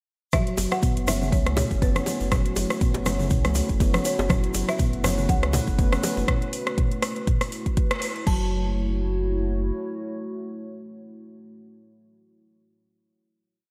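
Afro house with a spiritual, warm mood, built on a deep house kit whose up-front, deep four-on-the-floor kick and crash drive the groove, while an electronic afro-pop kit adds metallic programmed hats, rim clicks and low toms in a swung sixteenth feel. Bright congas, tight high-tuned bongos in a hand-drum cross rhythm and a grainy, distant tube shaker playing sixteenths sit in the background. A round sine sub bass with tube saturation and sidechain pumping carries a dotted rhythm, and a ringing nitrided-steel handpan repeats a 16-step arpeggio sequence through analog delay. A woody, rustic marimba plays motif-based call phrases in the background, over a moody detuned analog pad with chorus and phaser that enters at 1.3 seconds on an F#m7 chord. The drop runs until 8.3 seconds, with a band accent at 7.9 seconds, after which the pad and marimba, briefly joined by the sub bass, carry a final chord under light studio reverb.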